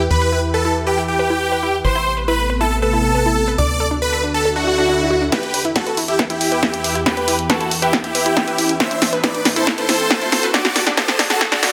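A huge, bright supersaw lead carries the melody up front over a thick, slow-attack chorused pad, a warbling, detuned pluck arpeggio with a filter sweep and delay, and a tight sawtooth sequencer bass, all pumping to the sidechain in this bittersweet, driving uplifting trance excerpt in E minor at 138 BPM, cycling through Em, Amadd9 and D. A very quiet swell enters at 4.6 s, and at 5.3 s the bass drops out as a punchy analog drum machine's snare and hi-hat step forward alongside a tape-warm layered kick in the background, launching a build-up with a drum fill, while a faint riser and, in the final moments, a reverse cymbal sit beneath. A lush hall reverb gives the drums the sense of a large room.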